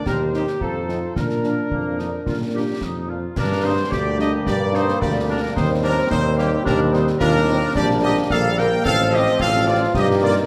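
Set in a wet recital hall, this brief cut from a rousing, proud military-style march for wind band in 2/4 puts a clear trumpet section on the melody, with a loose, lightly vibrato edge. A distant, roomy euphonium and a mellow, vintage-toned woodwind section carry second lines, while a warm, very quiet French horn section fills in accompaniment above an up-front tuba bass and close concert snare, bass drum and dark clash cymbals. At 3.4 s a trombone section joins in the background with sustained chords.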